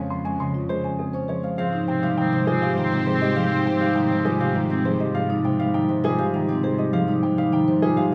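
Bright and hypnotic, this minimalist classical pattern piece in 3/4 sets a ringing, fingerpicked concert harp and up-front marimba arpeggios over a focused, bowed cello bass, while a natural-toned baby grand piano carries the melody from 0.1 seconds. At 1.6 seconds, as the harmony moves from Db/F to Abmaj7, a clear oboe with light vibrato adds a second line on C4 and a smooth studio string section supplies sustained chords, both dropping out by 5.0 seconds. A wet scoring-stage reverb surrounds the ensemble in this passage, which is cut from a longer piece.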